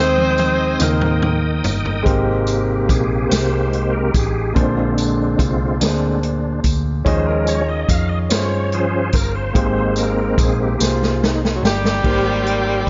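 A slow, straight 6/8 at 48 BPM carries this jubilant, soulful gospel excerpt in Ab major, with a distant, roomy drum kit, a round, punchy hollow-body electric bass and a jingly tambourine beneath a woody upright piano with audible action noise. A breathy tenor saxophone with tape echo and a smooth-topped horn section state the melody briefly at the opening and again from 11.6 seconds. Between 2.1 and 12.0 seconds a reedy, bright tonewheel organ with key click, slow rotary speaker and chorus vibrato takes the solo over Abmaj9, Bb9 and Eb9sus4 chords, while drum fills lead into the passage and mark its close in a small, lightly reverberant room.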